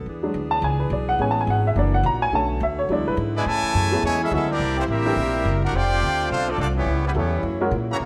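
A brassy, swinging jazz fragment at 212 BPM opens with soft-attacked saxophone-section chords, woody pizzicato upright bass and a slightly detuned upright piano taking the spotlight, before a bright, close-miked trumpet section carries the melody from 3.4 seconds over a distant, roomy trombone section's second line, all in light reverb.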